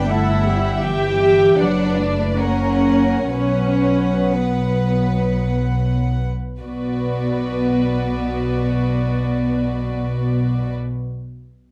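A warm double bass section sits up front in this brief, solemn passage for string orchestra, cut from a longer slow romantic movement in B minor and 3/4. The tempo drifts with rubato between 49 and 81 BPM, slowing through the opening 6.6 seconds before the harmony settles on B minor. Above the basses, a cello section and a viola section fill out the bass and accompaniment, all three bowed sul tasto with light vibrato and soft attacks for a close, intimate tone. Two violin sections carry the upper lines: one sings the melody with a smooth top, while the second line has a pure, floating quality. The production is dark with light reverb, giving the melancholic harmonies a soft, enveloping glow.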